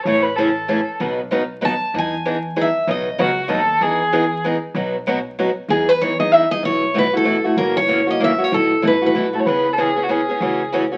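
A bowed violin opens this lively, swinging string piece in jazz manouche style, its warm, smooth tone carrying vibrato, before a picked steel-string guitar and an upright bass join in a moment later to drive a swinging waltz feel in three. The accompanying guitar has a jumbo, full-bodied sound and sits up front, while the pizzicato bass stays low in the mix with a woody, dark, thumpy gut-string tone. A second picked steel-string guitar takes the melody at 1.6 seconds, bright and up front, with fresh strings and audible finger squeak. The violin returns in short phrases as a second line, and the lead guitar comes back at 5.7 seconds as the harmony moves through major-seventh, suspended and dominant chords toward minor colours near the close. A moderate studio reverb adds some room, and the whole cut carries the crackle and aged character of a very old 78 rpm record, sounding like a passage lifted from a longer performance.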